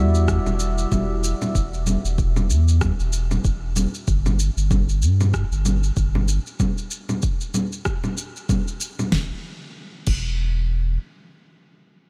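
Soft, dark electric-piano-like synth keys with chorus and analog delay sound an Em9 chord over a round, sine-toned sub bass for the first 1.6 seconds of this excerpt from a wistful, relaxed sunset chillout track in E minor at 95 BPM. From 0.1 seconds, a tape-warm deep house kit of congas, shaker, rim click, fat snare and crash cymbal sits up front, joined at 0.3 seconds by a layered deep electronic kick, to carry the swung 4/4 groove in a dry, small-room sound, while the bass continues through a chordless stretch from 4.1 seconds until it ends at 11.0 seconds.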